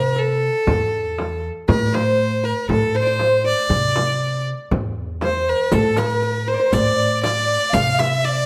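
A moderate recital-hall reverb surrounds this soulful, melancholic Arabic maqam ensemble passage in straight 4/4, where an up-front bowed violin with smooth, light vibrato and a boxy tone carries the melody over a bright-edged, fingerpicked qanun in the background, a thumpy, woody pizzicato upright bass, a crisp metal-shell darbuka and a deep frame drum both played with soft hands, until a very quiet, focused chamber violin section and a faint riq with bright jingles join at 5.7 s.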